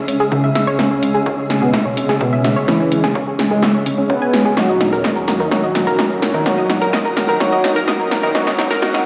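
A melancholic, hypnotic melodic techno excerpt at 127 BPM in Eb phrygian opens on a chorused, tremolo-tinged analog pad in the background, a bright, round analog pluck arpeggio with sub octave, dub echo and a filter sweep, a very quiet evolving drone with pulse-width modulation and a cloudy, blurred granular cloud pad, the pad, pluck and cloud pad pumping to the sidechain, while an up-front analog drum machine drives a drum fill across the whole build-up with punchy snare, hi-hat and shaker, joined at 0.3 s by a juicy, resonant, wave-folded polysynth melody with digital delay and its own filter sweep, a smooth, very quiet unison supersaw second line and a very quiet electronic kick, before a faint riser creeps in from 7.3 s as the harmony moves from Dbm to Ebm, all bathed in a lush hall reverb on a big sound system in a bare room.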